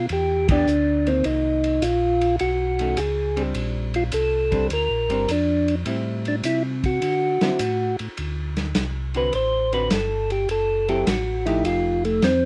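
Bluesy and greasy, this soul jazz organ trio swings at 104 BPM in 4/4, with an up-front percussive tonewheel organ carrying the melody through a slow rotary speaker, its tone round and dark with third-harmonic percussion, while a second, mellow tonewheel organ with vibrato and key click holds down the bass. A dark, clean hollow-body electric guitar picks the accompaniment, and a vintage drum kit of hi-hat, kick, ride and snare sounds muffled and lo-fi, with dark cymbals and a tight kick in a small room. After a band accent at 0.4 seconds, the chords move from Em7 through D9, and the organ takes a solo from 8.2 seconds over D6, F#m7b5 and F9, all in a rough home demo mix with light reverb, cut from a longer piece.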